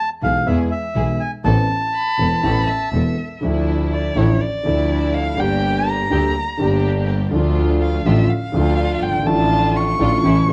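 A reedy, airy bandoneon opens this dramatic, passionate tango fragment, carrying the melody up front before falling silent at 2.9 seconds. Around it, a dark, mellow baby grand piano supplies accompaniment while a bowed double bass, biting and earthy with light vibrato, anchors the low end, and a smooth, even studio string section adds bowed stabs. A rich violin joins at 1.9 seconds with a second line, then takes over as soloist from 3.4 seconds, its expressive vibrato and portamento leading the rest of the passage as the key shifts from A harmonic minor to D harmonic minor. The tempo sits around 123 BPM in 4/4 but is played with a rubato feel, moving from E through Amadd9, Dmadd9, Gm and Dm before settling on Dm over A. A moderate large studio reverb surrounds the ensemble, and the whole recording carries the worn, warbling pitch drift of old cassette tape, cut from a longer piece.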